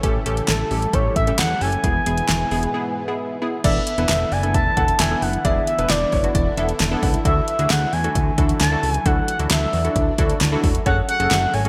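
Bright and upbeat, this synth-pop excerpt sets a punchy deep house drum kit with gated reverb and a fat analog bass beneath a nasal, funky polysynth comp and a lush, phased unison pad in the background, while a smooth, expressive synth lead with vibrato and delay enters at 0.5 seconds and, after a short break at 2.7 seconds, a clear concert grand piano with delay adds a second line from 3.6 seconds, the whole mix sitting in a moderate hall reverb with 1980s-style digital production.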